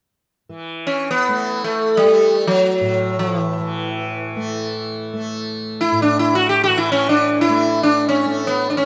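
A tanpura drone opens the recording at 0.5 seconds, its bright, softly plucked strings buzzing and shimmering low in the mix beneath what follows. At 0.9 seconds the sitar enters up front, carrying the melody in raga Khamaj on A, in free time with the serene, radiant calm of Indian classical music. Its plectrum-plucked tone is round and buzzing, with sympathetic strings adding a glowing halo around each note. The sitar sits well above the drone in level, ranging between E3 and G4 while the tanpura holds its ground from A2 to A3. A moderate plate reverb with a long 2.9-second tail surrounds the instruments, though the mix keeps the rough feel of a home demo. This brief excerpt is cut from a longer piece, and both parts play together through to 8.9 seconds.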